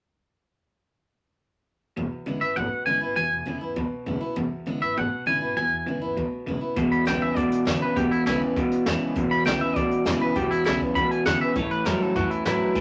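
A twangy, bright electric guitar takes the melody up front, its clean picked line shimmering with vibrato over a rollicking, upbeat rockabilly groove at 200 BPM in E mixolydian, cut from a longer piece. Beside it, a slightly broken-up electric guitar through a small old amp drives a low riff soaked in spring reverb, while a full-bodied jumbo acoustic guitar plays picked accompaniment and a woody, thumpy upright bass sits in the background. At 6.8 seconds a brush drum kit with a high-tuned snare and boomy kick joins in, and the harmony moves from E7 to A at 11.6 seconds inside a moderate studio reverb.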